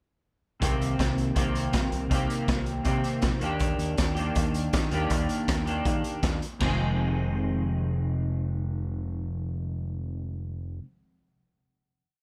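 Indie rock at 160 BPM in a straight 4/4, this short, complete piece feels cool and bittersweet, set in F dorian. A clean, dark electric guitar, picked and double-tracked, rings out chords up front, moving from Cm7 to Ebmaj7 through a brief pre-chorus. Beneath it, a growling fingered electric bass with overdrive gives a bright, amped edge. A raw garage drum kit drives an indie four groove with a punchy kick, a medium-tuned snare, hi-hat and dark cymbals, sounding saturated and gritty with a rolled-off top and a pumping small-room character. The drums stop at 6.7 seconds as the band lands on a final Fm7 chord, which the guitar and bass hold until the piece ends at around 10.9 seconds, all inside a small room ambience.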